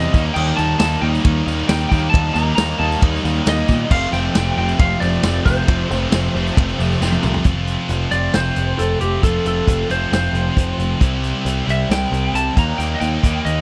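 Classic rock at 135 BPM in 4/4, driving and swaggering, this short cut from a longer piece stacks a bright, tight distorted guitar riff, a sludgy overdriven rhythm guitar in the background and a very quiet double-tracked fuzz guitar over a dark, round, overdriven picked bass and an up-front vintage drum kit with a punchy kick and rolled-off top. A twangy, slightly broken-up lead guitar with slapback echo carries the melody, while a mellow phased string-machine cello pad and a jingly tambourine sit very low beneath the chords moving from Eb to F. After a drum fill at 7.0 seconds the pad, fuzz guitar and tambourine drop out and the band settles into a half-time feel, passing through C and back to Eb, all captured with a dry, close 1970s-style small-room sound.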